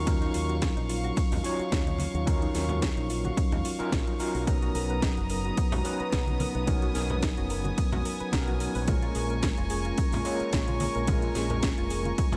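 A punchy, overdriven electronic kick drives this cosmic, sleek nu-disco excerpt at 109 BPM in Eb minor, alongside a house kit with a cracking snare and metallic hats, ringing egg shaker and congas in the background, and a fingered electric bass through an envelope filter, while a barky, gritty tine electric piano with tremolo and tape echo, a floating, soft-attack violin section and a dark, round pluck playing arpeggios with chorus all pump against the kick over Ebm9, Bmaj7 and Bbm7 chords in a dry mix.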